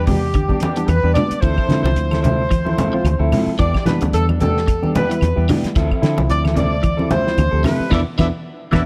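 A clear, punchy horn section carries the melody from the start over a bright tine electric piano, a lo-fi electric guitar with spring reverb playing stabs and a round, foam-muted fingered bass, setting up an intense, defiant afrobeat groove in D dorian at 111 BPM with a 16th-note swing. From 0.1 seconds a twangy, slightly broken-up guitar adds phaser-coloured arpeggios in the background, joined by a dry, cloth-damped drum kit with a fat snare and tight kick, plus low-tuned, ringing congas, with woody claves following at 0.3 seconds. The chords move between Em7 and Dm9 in a small room with light reverb before the band lands a shared accent on E5 at 7.9 seconds, where this cut from a longer piece ends.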